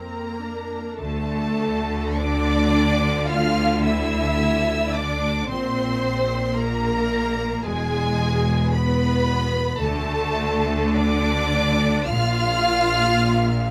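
Closely miked and nearly dry, this brief excerpt from a slow, rubato romantic movement for string orchestra in D minor, at 49-56 BPM, sets a rich, expressive violin melody with vibrato above a smooth second violin line, while focused violas accompany, up-front double basses anchor the bass from the start and clear cellos join them at 1.0 seconds, giving a lyrical, tender mood.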